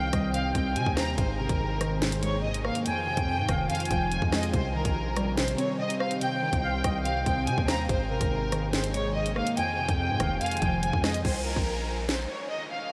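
A lush, bowed violin section leads this tense, ominous drill excerpt, its smooth vibrato sitting up front and softened by a low-pass filter and delay. An expressive jazz flute traces an airy second line, while warbling, detuned lo-fi synth keys with a nostalgic, mellow character supply the accompaniment through chorus and a low-pass filter. A glassy, ethereal FM pad holds sustained chords in the background over a Cm, Abadd9 and Fm7 progression. The half-time groove rests on a deep, long sine 808-style bass and an electronic drill kit with a hard-clipped kick, sharp snare, bright hats, rim clicks and crashes. At 11.2 seconds the chords drop away into a brief break marked by an electronic downlifter, and the whole mix is soaked in huge, dreamy reverb.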